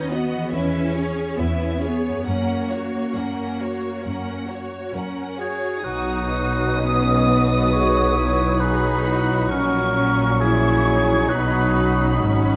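Serene and warm, this slow romantic orchestral passage moves at 67 BPM in B major with a rubato feel, cut from a longer piece. Rich, bowed first violins carry the melody with focused vibrato and a smooth top, while the second violins and distant violas sit in the background with expressive vibrato, the violas adding lush portamento. Cellos and clear, even double basses form a rich, lush bass beneath, and a very quiet concert harp rings out fingerpicked arpeggios from the start. At 5.4 seconds a mellow solo oboe enters with a second line, soon joined at 5.8 seconds by an airy, distant flute, a distant bassoon with light vibrato, and a mellow French horn section holding sustained chords in the background. A very quiet solo clarinet adds one more line from 7.7 seconds, all within a moderate scoring-stage reverb.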